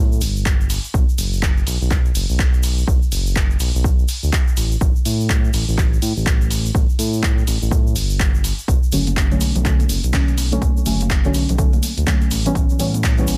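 Deep house at 124 BPM in B minor with a swung sixteenth feel, this deep, warm excerpt is cut from a longer piece, built on a smooth, dark sawtooth-and-triangle synth bass that pumps against an up-front, punchy, tape-warm electronic kick, while an analog drum machine adds handclaps and hi-hat and a grainy egg shaker sits in the background. Around 8.9 seconds a soft, warbling vintage chord stab enters with chorus, digital delay, a filter sweep and sidechain pumping, moving through Bm9 and A7, joined moments later by very quiet, bright, compressed congas. The mix is dry and densely limited, with little reverb.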